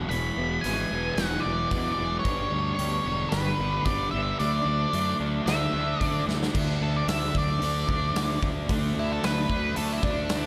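Up front, an octave-fuzz lead guitar with a dark, distorted tone and slapback echo carries the melody, turning into a solo from 6.5 s in this bittersweet, anthemic piece of quiet-loud alternative rock at 112 BPM in 4/4. Beneath it, a thick fuzz guitar with a bright, picked edge drives the riff, while a fuzz fingered electric bass, overdriven yet dark and round, holds down the low end. In the background, a twelve-string electric guitar plays clean, compressed, twangy arpeggios colored by ensemble chorus and slapback echo. A huge arena drum kit with a punchy kick and medium-tuned snare, plus crash and hi-hat, sits in half time through the opening 6.5 s, then a fill at 6.3 s launches the second section. The harmony moves from Eadd9 through G and Dadd9 before settling on D, and a lush hall reverb gives this brief excerpt a big arena sound.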